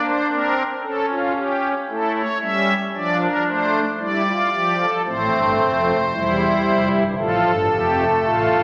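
Set in a straight, even 4/4, this brief cut from a longer baroque-style classical piece moves with a solemn yet driving pulse. It is a four-part fugue played on a solo pipe organ using strings celeste stops, heard from 0.0 to 8.6 seconds. The organ sound is shimmering and soft, with a romantic voicing that sits up front and spans from E1 to E5. The harmony travels from a rootless Gmadd11 through A7/C#, Dm/F and Am before settling on Fadd9. A wet concert hall reverb, with a decay of 1.9 seconds, surrounds the organ and lends the counterpoint a spacious, reverent glow.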